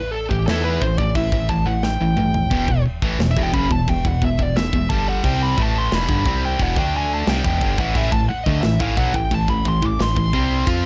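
A high-gain lead guitar solo opens this heavy, aggressive heavy metal excerpt at 0.0 seconds, its dark, distorted picked tone carrying the melody high above a fat, detuned sawtooth bass with a fast attack, sustained notes and a filter sweep. At 0.3 seconds a double-tracked, overdriven rhythm guitar joins with a bright, picked riff placed up front, alongside a tight metal drum kit whose saturated, gritty sound features a tight kick, medium-tuned snare, crash cymbal and toms. The drums play a fill at 1.8 seconds, and the harmony moves from A5 to E minor and back to A5 at a steady 88 BPM in a straight 4/4. The mix is dry and dark, with little reverb and a rolled-off top end, leaving the grinding guitars and thick bass to dominate this short fragment of a longer piece.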